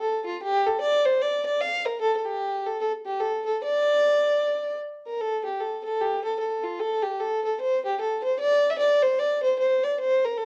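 A lone fiddle, dark and woody with a smooth top and light vibrato, carries this spirited, wild Celtic folk excerpt in D minor, bowed up front by one player across a range from F4 to F5. At 150 BPM in 4/4 with a lilting swing on the eighths, the tune plays its opening phrase and then repeats it from 5.2 seconds. Light reverb surrounds the fiddle, and the sound carries the warble and pitch drift of a worn old cassette tape.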